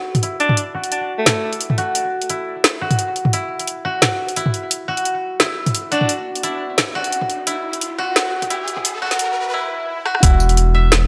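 Half-time drum and bass with a cinematic, tense mood, this excerpt builds as a dry, woody koto plays fingerpicked arpeggios through a low-pass filter sweep and tape echo, over an overdriven, layered drum kit with a woody snare, bright hats, rim clicks, tambourine and toms. A clear alto saxophone with light vibrato, subtone and scooped notes adds brief jazz-style phrases at 0.4 and 5.9 seconds. An electronic riser and swell climb from 6.4 seconds, a drum fill lands at 10.1 seconds, and a knocking overdriven kick and deep, saturated sine sub bass hit at 10.2 seconds, all in a lush hall reverb.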